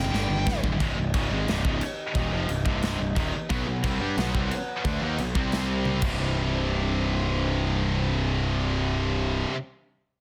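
This dense, heavily limited mix sits in a light reverb, giving an epic, relentless slice of heavy metal cut from a longer piece. A growly, fuzz-drenched electric bass sits up front, while three bright, distorted guitars churn out the riff in the background, two of them high-gain and one tight, with one of the high-gain parts double-tracked. A nasal lead guitar with a parked wah flashes a brief overdriven phrase with tape echo before it stops at 0.6 seconds, as a dark classical-style brass ensemble holds sustained chords beneath the whole passage. One of the high-gain guitars drops out early and returns at 3.5 seconds, thickening the wall of riffing. A polished, airy acoustic drum kit with a tight kick and medium-tuned snare opens with a fill, drives through with crash cymbal and toms, and lands another fill before it stops at 6.1 seconds, leaving the guitars, bass and brass to carry a new section.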